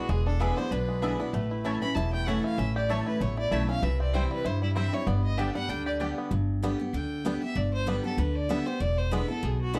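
A dark, moderately roomy studio sound frames this virtuosic, rustic bluegrass excerpt in G major at 193 BPM with a swung feel, where a clear, biting fiddle with light vibrato and a mellow, twangy banjo share the melody, both touched with plate reverb, over a bright, full-bodied picked acoustic guitar and a thumpy, woody upright bass up front, while a double-strung mandolin adds picked stabs until 6.1 s.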